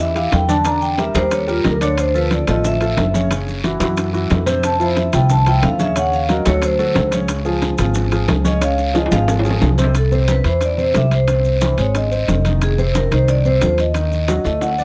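Afro-Cuban jazz in a lively, sophisticated mood, cut from a longer piece, where a dark, smooth vibraphone struck with medium hard mallets takes a solo through the first 9.9 seconds over a woody upright piano with long sustain and an up-front pizzicato upright bass, while ringing metal-shell timbales, background congas played with hard hands, very quiet round bongos, a raspy guiro and grainy maracas fill out the percussion, with drum fills at 8.9 and 14.4 seconds, all captured by close, detailed microphones with light reverb.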